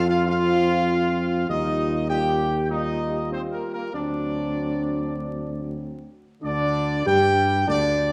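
A steady, straight 4/4 pulse at 97 BPM carries this regal, solemn classical brass passage, cut from a longer piece and lasting about 8.1 seconds. An up-front, bright trumpet section with light vibrato sings the melody between Bb4 and G5, while a clear trombone section holds sustained chords beneath it. A dark French horn section, soft in attack and set distant and roomy, fills out those chords, and a mellow solo tuba anchors the bass between D2 and G2. The harmony moves from F5 through Ebadd9 and D7 before shifting to G5/D at 6.4 seconds, where a new section begins. A moderate scoring-stage reverb surrounds the ensemble, and the dark production carries a layer of vinyl crackle.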